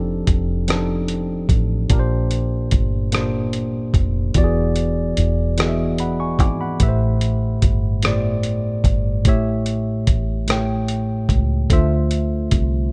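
A dusty, sampler-style soul drum kit sits up front in this intimate, tender slice of slow six-eight R&B, its gritty, compressed hi-hat, thumpy kick and rim click sounding tape-warm and re-recorded in a small room as they enter at 0.3 seconds and carry on until 12.7 seconds. The pulse moves at a patient 49 BPM in 6/8 with a straight feel, tuned slightly low to A4 = 439 Hz. Underneath, a deep dub fingered electric bass holds the bottom end with a round, punchy, foam-muted tone that comes across dark, direct and amped. A worn tine electric piano, slightly out of tune yet clean and warm through a combo amp, sits up front with the chords, moving from F13 through Bb69, E7, Am7 and A7 to Dm7. The dry, dark and warm production keeps this fragment of a longer piece close.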